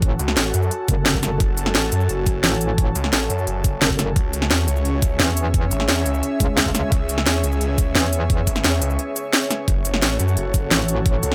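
A straight, driving drum and bass beat opens this tense, dark technical excerpt: an overdriven electronic kick knocks up front while a layered kit adds a cracking snare, crisp hi-hats and cabasa, all sounding as if re-recorded in a small room. Underneath, a snarling, detuned saw bass growls with distortion and sidechain pumping, joined by a metallic FM wobble bass with chorus that drops out at 8.5 s and returns briefly at 10.7 s. Above them, an airy, breathy pad with a noise layer and a deep, moody ambient pad sitting in the background sustain slow-attack chords that shift from F#m to C#m and back, both pumping against the beat in an otherwise dry, close mix.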